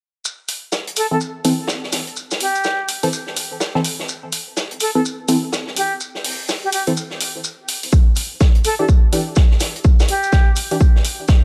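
A swaggering, gritty bass house cut, swung on the sixteenths and lifted from a longer piece, sitting in a small room ambience. A vintage acoustic drum kit of hi-hat, shaker and medium-tuned snare opens at 0.2 seconds, its hats and percussion pumping against the sidechain, joined by an overdriven electronic hi-hat. A band-passed chord stab sits up front with a nasal, detuned sawtooth bite, fast attack and decaying tail, colored by phaser, a filter sweep and digital delay while it pumps with the groove. Above it a silver concert flute plays a pure, expressive line between G4 and A4, distant and tongued with vibrato, trailed by digital delay. The harmony rests on A minor until a punchy, overdriven electronic kick lands up front at 7.9 seconds as the chord shifts to E minor seven, carrying the groove to the cut at 11.4 seconds.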